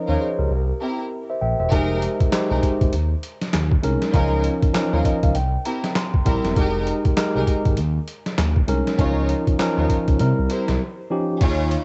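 New jack swing R&B in F minor at 99 BPM with a swung 16th feel, this punchy, slick clip opens on an up-front tine electric piano, clean through its built-in speakers, over a dark, detuned sawtooth synth bass that glides with portamento and vibrato, while lush bowed strings, soaked in cassette tape and analog delay, add stabs. A gritty, pitched-down sampler-style drum kit enters at 1.7 seconds with a thumpy kick, medium-tuned snare, handclaps, hi-hat and crash, compressed and re-recorded in a large room. The electric piano takes a fill from 4.7 seconds over a Db69, C7, Fm11, Eb7sus4 progression before a break at 10.8 seconds on Eb9, all carrying the dry, dulled sound of a home cassette recording.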